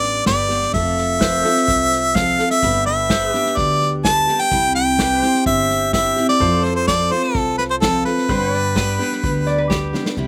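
A clear, close-miked harmonica leads this sunny, down-home honky-tonk and classic country excerpt, singing a pop-style melody up front with light vibrato and scooped notes. Beneath it, a bright, full-bodied dreadnought acoustic guitar is picked with a slapback echo, while a woody, thumpy upright bass plays pizzicato on steel strings. A twangy, compressed pedal steel guitar sits in the background, holding clean sustained chords with volume swells and a lush chorus. An acoustic drum kit played with bundle sticks gives a straight 4/4 feel, pairing a punchy kick with a medium-tuned snare and hi-hat, and adds a drum fill at 9.9 seconds. Near the close, at 8.8 seconds, a metallic, nasal lap resonator guitar joins with a slide second line played with fingerpicks, all in a dry, open-air sound with little reverb.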